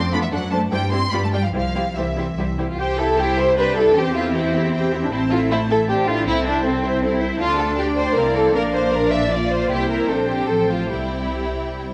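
A high violin melody opens this lively, cheerful fragment of a quick classical-period movement for string orchestra, sounding with clear, intense cellos and rich, expressive double basses from the very start. A moment later, at 0.1 seconds, a second violin line and bowed violas join. The second violin part sits most up front, smooth-topped and lush, while the higher melody violins carry a warm vibrato. In C major and 3/4 time, the music moves at about 142-160 BPM with a flexible, rubato feel. The harmony begins with a brisk D7/F# to C/G to G7 to C cadence, later passing through A minor, D minor and a B-flat before settling back on C. A moderate scoring-stage reverb surrounds the ensemble, and a worn cassette-tape quality adds a warbly pitch drift to the whole recording.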